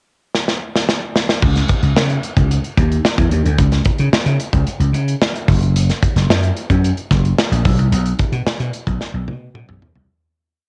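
Nocturnal and slick, this short, complete piece is polished 1980s jazz-funk pop at 111 BPM in a straight 4/4, set in C# dorian. An acoustic drum kit opens at 0.3 seconds with a fill through the pickup bar, its punchy kick, medium-tuned snare, hi-hat, toms and crash sitting up front with a rolled-off top and a cassette-tape character. At 1.4 seconds a bright, growly slap bass arrives for the verse, playing an agile syncopated line studded with muted ghost notes and chromatic approach notes between F#1 and C#3. The drums hold a crisp sixteenth-note studio groove beneath it before a second fill near the close, as the whole piece fades out from 7.9 seconds. Light reverb and the homely texture of a cassette recording give the amped bass and the studio-room kit an intimate, late-night sheen.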